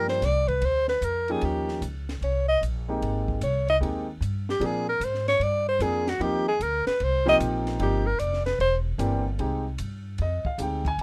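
Swung eighths drive this 4/4 small-group jazz at 151 BPM, a sophisticated, swinging slice of swing and bop in E-flat major cut from a longer piece. A breathy alto saxophone carries the melody as a close, intimate solo, its whispered subtone, soft attacks, scooped notes and vibrato sitting up front until it stops at 8.8 seconds. Beneath it, a concert grand piano comps with a natural, warm tone, deep bass and audible action noise. A woody, thumpy upright bass is played pizzicato on steel strings and sits up front. A compact cocktail kit sits lower in the mix, with dark cymbals on ride and hi-hat, a high-tuned snare and a punchy kick. The harmony moves from Gm7 through Eb7, Abmaj7, Bb7 and Eb6 to C7, then lands on Fm9 at 9.4 seconds as the form starts over, all in a dry, rough home-demo sound with little reverb.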